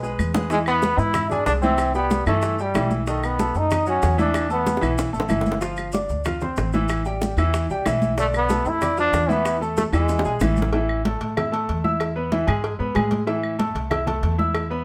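A distant, roomy trombone leads this fiery, danceable salsa excerpt with a pop-style solo line up front, dropping out briefly and returning at 8.2 s. Beside it, a baby grand piano with a brilliant, open tone and long sustain spreads its accompaniment across a broad range. Underneath, a dark, thumpy upright bass with gut strings is played pizzicato and sits up front. The percussion bed combines ringing, medium-tuned congas struck with hard hands and tight, high-tuned bongos and cowbell, close and dry. Woody claves and grainy, saturated maracas sit in the background, with the maracas stopping at 10.7 s as the harmony moves into a new passage. A moderate studio reverb gives the whole ensemble a sense of shared space, and the cut begins and ends mid-piece.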